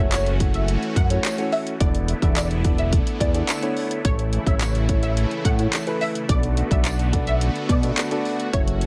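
A straight 4/4 dance-pop groove at 107 BPM drives this upbeat, euphoric excerpt, with a punchy, up-front electronic drum kit of kick, handclaps and hi-hat, a jingly acoustic tambourine in the background, and a fat, thick, detuned sawtooth analog bass that pumps against the kick. Over the chords F#m7, E7sus4, A and Bm7, a dark, mellow baby grand piano with long sustain and a bright, slow-attack filtered supersaw swell hold the harmony, both pumping with the beat. A lush, punchy unison pluck with a noise layer carries the melody between C#5 and F#5, thickened by ensemble chorus and delay, all in a dry, close sound that ends at 8.9 seconds.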